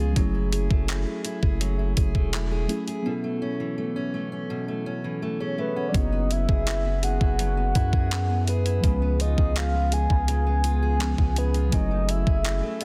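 A deep, sine-toned 808-style bass sits up front in this dreamy, romantic slice of contemporary R&B, its long notes striking fast and then decaying under chords that move from F#m9 through B9sus4, F#9sus4 and C#7 before returning to F#m9. Beside it, a clean 12-bit drum machine with a thumpy kick, hi-hat and handclaps gives a straight, sampler-style pulse, with a break arriving at 3.1 seconds. Muted, felt-like synth keys supply intimate, warbling accompaniment with a vintage, dark character, a noise layer and a filter sweep, treated with chorus. A fingerpicked steel-string acoustic guitar weaves warm arpeggios through a delay, heard as if in an auditorium. At 5.6 seconds a soft, round synth lead layered with a sub octave takes the melody, full and sustained with vibrato and chorus. Near the close, at 11.7 seconds, a delicate, bell-like celesta adds a sweet touch in the background, all set in digital ambience and a dense, heavily limited modern master.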